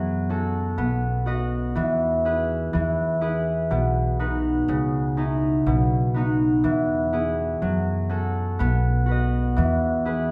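A concert harp sits up front, its fingerpicked strings ringing brightly through a cheerful Celtic polka in 2/4 at 123 BPM. Underneath, a pizzicato upright bass with gut strings adds a woody, thumpy pulse, and both instruments play together from the opening moment to the close at 10.3 seconds. The tune is in E major, tuned a little below standard pitch, and carries a gentle lilt from its light swing on the eighth notes. Its chords circle through F#m, B and E, with a C#madd9 adding color around 4.7 seconds. The opening phrase ends at 2.7 seconds and is then repeated, all bathed in the wet glow of a recital hall, and the clip is cut from a longer piece.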